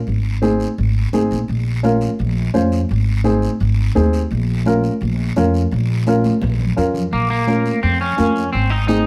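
A straight 4/4 cumbia groove at 170 BPM in Bb minor drives this passionate, danceable latin excerpt, with up-front pizzicato upright bass, woody and steel-strung, anchoring the Ab to Bbm changes alongside bright, high-tuned congas sitting distant in a large room and a raspy, close guiro. A dark, mellow upright piano with short sustain joins at 0.4 seconds, and after a drum fill from 6.1 seconds, a twangy, slightly broken-up electric guitar takes the melody at 7.1 seconds, coloured by spring reverb and slapback echo. The whole sits in a moderate studio reverb, and the fragment is cut from a longer piece.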